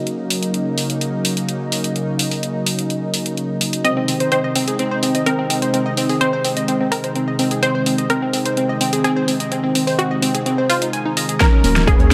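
Driving and emotional, this progressive house excerpt at 127 BPM opens on a lush, detuned unison pad holding Ebm7 with chorus and sidechain pumping over an overdriven big-room kit of hi-hat and huge snare. At 3.8 s a punchy unison pluck melody with dub echo and a glassy, crystalline wavetable pluck arpeggio soaked in tape echo arrive on Ab. A drum fill at 11.4 s then brings in a punchy overdriven kick and a smooth supersaw second line, followed by a round, deep analog bass and bright congas in the background at 11.6 s and a very quiet riser at 11.9 s, all set in a lush hall reverb.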